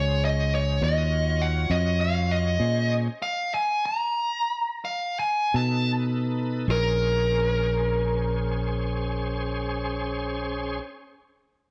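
Rolling in a slow 12/8 at 50-68 BPM counted in dotted quarters, this soulful, mournful blues in B-flat minor slows from 1.4 s and drops into a stop between 2.6 and 5.5 s. Over it, a dark, overdriven lead guitar carries the melody up front with a smooth, picked tone. A bright tonewheel organ holds sustained chords lower in the mix, its lightly overdriven, shouting sound shaped by a slow rotary speaker, chorus vibrato and audible key click. A round, punchy fingered electric bass sits up front beside the guitar, direct and amped. The harmony opens on a rootless minor ninth chord and moves through further minor ninths and a dominant seventh, all set in a moderate echo-chamber reverb with a mellow top end, in this short section taken from a longer piece.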